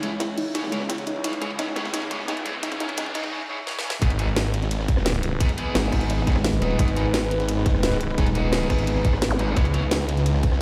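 At 173 BPM in a straight 4/4, this tense, aggressive dark technical drum and bass excerpt in G# minor builds over a crunchy, gritty breakbeat kit in the background, a cracking drum and bass snare, a tight electronic kick from 0.2 s, a snarling, growling saw bass, bright distorted electric guitar stabs, a deep, moody ambient pad, a soft round pluck arpeggio and a riser until the drop at 4.0 s, after which a pulsing sine wobble bass joins at 5.8 s and the whole mix drives ahead in a big bare room.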